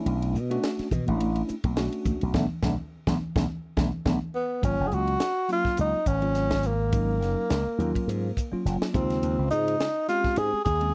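A breathy tenor saxophone, mellow in subtone with light vibrato, scooped notes and a slapback echo, takes the melody from 4.3 seconds in this nocturnal, slick electric jazz fusion excerpt with a light swing. Up front beside it sit a punchy slap bass through an envelope filter and a tight funk kit with bright cymbals and a high-tuned snare, while a clean tine electric piano with medium tremolo accompanies through a combo amp and adds a fill during a band accent. Soft-handed, high-tuned congas sit in the background from 0.9 to 4.2 seconds, all captured in a dry, close 1970s-style studio sound.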